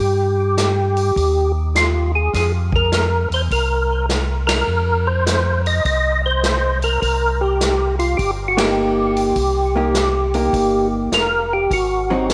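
A swinging 4/4 groove at 102 BPM drives this smoky, bluesy soul jazz organ trio fragment in C minor, where a fat, percussive tonewheel organ with key click, slow rotary speaker and tape echo carries the melody up front over a piping, scooped organ bass with a stopped rotary speaker, while a distant, roomy drum kit with a punchy kick enters at 0.6 seconds, the band hits accents at 4.4 and 8.5 seconds, and a dark, compressed hollow-body electric guitar joins the accompaniment at 8.6 seconds, all in light small-room reverb.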